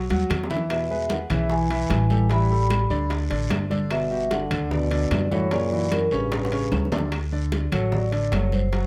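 A close, detailed recording with light reverb opens this sunny, danceable Afro-Cuban jazz excerpt, moving at 150 BPM in a straight 4/4. An up-front concert grand piano with deep bass and audible action noise comps alongside a growly, woody pizzicato upright bass from the start. The percussion sits mostly in the background: thick-skinned congas struck with hard hands, tight high-tuned bongos played with soft hands, ringing metal-shell timbales in a live room, woody claves and a raspy, dry guiro, with drum fills at 0.1 and 6.3 seconds. From 0.7 seconds a metallic vibraphone carries the melody with medium hard mallets and a slow motor vibrato in a boxy small room, while a present trombone adds a second line with light vibrato and scooped notes until 6.9 seconds. The harmony moves through E, Asus2, Gmaj7, F#7b13 and A9 before settling on D at 7.1 seconds, where the vibraphone takes a solo.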